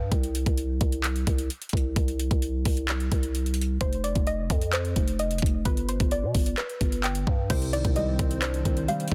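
Dry, dense and heavily limited, this dark, brooding half-time trap excerpt at 130 BPM in C harmonic minor opens on a growling 808-style bass and knocking, overdriven electronic drums with metallic hats, handclaps and crash, adds a soft round pluck with chorus and digital delay at 3.8 seconds, then at 7.5 seconds brings in a felt-muted upright piano with audible action noise and a hollow, flute-like pad over a Cmadd9 chord.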